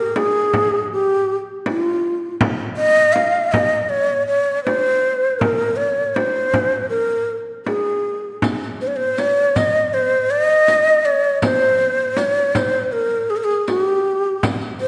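This Arabic maqam ensemble piece in C maqam bayati moves at an unhurried 80 BPM in a straight 4/4, with a melancholic, longing mood, and it is cut from a longer piece tuned to A4 = 435 Hz. An end-blown reed-cane ney carries the melody from the very start, sitting up front with a breathy, mellow tone, expressive vibrato and tongued notes across a range from F4 to F5. A frame drum joins at 0.2 seconds, sounding warm, close, dry and acoustic, played with hard hands. At 8.4 seconds a riq enters in the background, its bright jingles slightly vintage and band-limited in character. The ensemble is set in a lush concert hall reverb with a long, lingering tail that lends the ney's phrases a spacious, mournful glow.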